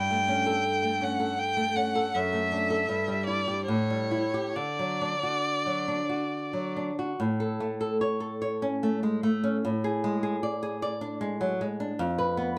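A light reverb surrounds this close, intimate fragment of a romantic, lyrical duo in a flexible, rubato waltz time. Up front, a single bowed violin with a soft attack, expressive vibrato and gliding portamento sings the melody in a plate-reverb glow until 6.8 s, over a small, fingerpicked nylon-string guitar that supplies warm accompaniment. The guitar carries on alone into a new section at 7.2 s, its harmony shifting toward rootless chords before the fragment breaks off at 12.6 s.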